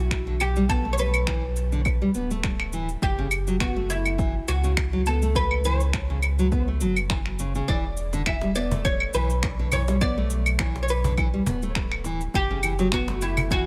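Organic downtempo in E dorian at 103 BPM, this short cut from a longer piece moves with a gently swung 16th-note feel and a warm, hypnotic mood. A bright, plectrum-plucked oud carries the melody with the woody ring of its fretless double strings, set in tape echo and shimmer reverb. Beneath it, a full-bodied, fingerpicked nylon-string guitar plays arpeggios from 0.3 seconds, washed in digital delay and shimmer reverb. A deep, round sine sub bass sits up front with sidechain pumping, joined by a punchy, layered electronic kick and up-front electronic finger snaps, shaker and claves, all re-recorded in a small room. At 8.1 seconds a hard-handed acoustic cajon enters with faint snares, and the chords shift between E and F#-minor colors over a light, intimate room ambience.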